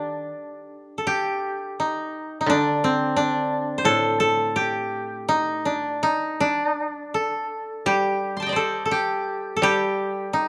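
Japanese traditional chamber music, austere and calm, moves in a rubato 2/4 around 80-89 BPM in D, set in a sen mode. Two kotos sound throughout the 10.5 seconds: one carries the melody up front, dry and woody with a warm fingerpicked tone, while the other supplies a lower, more mellow accompaniment beneath it. Close, detailed microphones and light reverb capture this short passage cut from a longer piece, with a brief opening section giving way to a second at 1.0 seconds.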